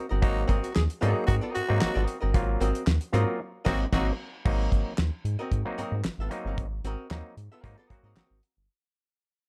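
Funk with an energetic, strutting feel in straight 4/4, this short cut from a longer piece rides a single Ab9 chord. A damped 70s drum kit sits up front with a fat snare, tight kick, hi-hat, handclaps and crash cymbal, its dry, dark sound rolled off at the top, while a round analog bass, deep and sustained with a fast attack, anchors the low end alongside it. A clean, compressed hollow-body archtop guitar, miked and amplified, plays picked accompaniment with a touch of plate reverb, and an overdriven auto-wah clav adds stringy, percussive stabs through a combo amp. A growling tenor saxophone, breathy and raspy with scooped notes in a jazz style, carries a second line until about 4.1 seconds. The band hits an accent from 3.4 to 4.5 seconds, and from 4.5 seconds the piece fades out in a light room reverb.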